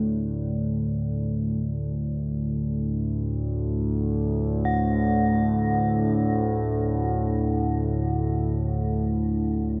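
Moving in free time, this dark ambient drone piece feels vast and ominous, tuned to A4 = 436 Hz and cut from a longer work. An up-front analog drone holds the low register from D2 to A2 across the full 9.8 seconds, its warbling sawtooth and pulse-wave tone mellow and slowly evolving under chorus. A bronze singing bowl, struck with a wooden striker on D5 at 0.0 seconds, rings quietly above, dark, smooth, metallic and meditative with slow beating, all set in a huge wet reverb with an 8.4-second decay.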